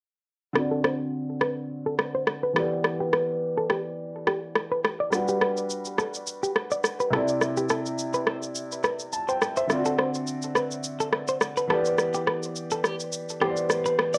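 A clear concert grand piano opens at 0.5 seconds as accompaniment, open and rich in deep bass, its tone softened by a low-pass filter as it moves through D7, Em7, Gmaj7 and Cadd9 before circling back to D7 and Em7. At 0.6 seconds an electronic rim click and shaker join to set a 105 BPM afrobeats groove in 4/4, swung at 55% on the sixteenths, sitting up front with a gritty vintage 12-bit sampler edge and a cassette-tape tint. From 0.7 seconds a bright, twangy, direct-recorded clean electric guitar plays a picked, compressed riff between G4 and D5, colored by warbly pitch drift, tape echo and its own low-pass filter. A filter sweep runs across the whole passage, which is a single section in D mixolydian cut from a longer piece. The home cassette recording sits in a short, wet studio reverb, and the mood stays joyful and breezy throughout.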